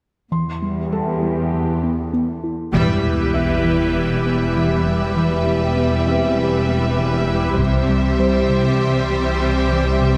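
This cinematic hybrid of orchestral and electronic film scoring moves at 99 BPM in a straight 4/4, brooding and relentless in E minor, and is cut from a longer piece. From 0.3 seconds a swirling, detuned sawtooth pad with phaser and chorus holds bright sustained chords, while a dark, harp-like synth pluck ripples arpeggios through chorus and delay beneath a filter sweep. Underneath sit a lush, expressive cello section carrying the bass in the background and a felt-muted upright piano adding mellow, intimate texture, its action noise faintly audible through a touch of delay. At 2.7 seconds the full band accents together as a bowed violin section with focused vibrato takes a second line, a clear, intense viola section fills in the accompaniment, and a woody double bass section deepens the low end, joined by heavy-stick taiko hits and an electronic sub drop that lands as an impact. The harmony holds on E minor before shifting to C at 7.6 seconds, when the close taiko ensemble strikes again, all set in a wet scoring stage reverb.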